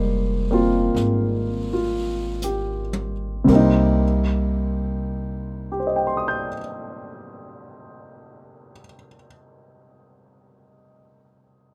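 An up-front grand piano, its action noise audible, and a woody pizzicato upright bass open this intimate, melancholic jazz ballad excerpt in C minor, swinging slowly at 36-45 BPM and easing back in tempo as brushed drums with dark cymbals and a boomy kick enter quietly at 1.0 seconds and play a short fill from 2.4 seconds over the move from Fm11 to Cm7, before the bass drops out at 6.5 seconds and the piano carries on alone to 11.7 seconds in a rough home demo mix with light reverb.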